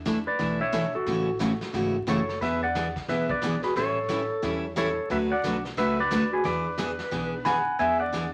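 Playful and cheerful, this short western swing excerpt moves at 178 BPM with a swung feel, led by a twangy, clean lap steel guitar played with fingerpicks and slide up front over a bright, full-bodied picked acoustic guitar, a woody pizzicato upright bass and a brushed vintage drum kit with a punchy kick sitting in the background, while a dark, jazzy clarinet with vibrato and scooped notes joins at 2.1 s, the whole mix set in a wet studio reverb with a layer of vinyl crackle.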